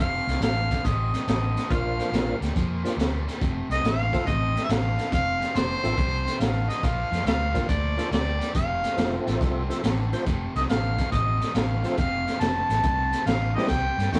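Electric blues shuffle at 140 BPM in F mixolydian, laid-back and swaggering, with an up-front mellow harmonica carrying the melody in scooped, lightly vibrato-touched jazz-style phrases over a gritty, saturated breakbeat kit with a high-tuned snare and tight kick. A bright, overdriven stack guitar picks out a low riff beneath, while a round, foam-muted fingered bass anchors the F and Bb changes, and a fat, percussive tonewheel organ with key click, chorus vibrato and slow rotary speaker joins at 1.7 s. This rough rehearsal-room take sits in light reverb and is cut from a longer piece, closing on a drum fill at 13.5 s.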